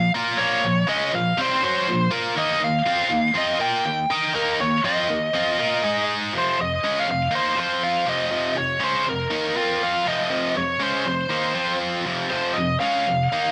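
A straight 4/4 pulse at 121 BPM drives this heavy rock passage in F minor: a tight, bright, double-tracked distorted guitar pounds out a riff spanning F2 to Eb5, while a biting, overdriven lead guitar with analog delay carries the melody between Bb4 and G5, both sitting up front in light reverb as the chords move through Bb5, Eb5 and Ab5 before landing on Fm where a new section begins at 6.3 seconds.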